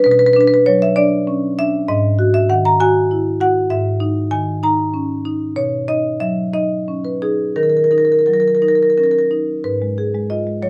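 A solo marimba sits up front in a moderate studio reverb, its medium mallets drawing a dark, smooth tone from the bars. This contemporary classical piece moves in a flowing 6/8 with a rubato feel, and its mood is reflective. The marimba carries everything alone, ranging from G#2 up to A#5 as the harmony passes through Bm, G#5, Emaj7#11/G#, Badd9 and D#m7. Around 9.6 seconds the music turns to a new section, settling on a G#m6 chord. The recording is a short passage cut from a longer piece and ends at 10.7 seconds.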